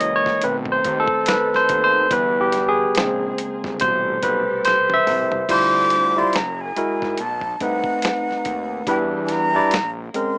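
Late-night and soulful, this slow neo-soul R&B excerpt moves at 71 BPM with a swung sixteenth feel, led by a bright, barky tine electric piano that is lightly overdriven through a combo amp, sits up front and takes a solo over chords such as B7b9 and Em7 through the first 5.5 seconds, with a drum fill arriving at 4.6 seconds. Beneath it sit a gritty, compressed sampler-style drum kit with a thumpy kick, a fat, saturated sawtooth analog bass with a filter sweep, and a very quiet, dark, woody string section holding lush bowed chords. At 5.5 seconds a breathy metal jazz flute with expressive vibrato enters on top, while light reverb and a rough home-demo mix lend a small-speaker character.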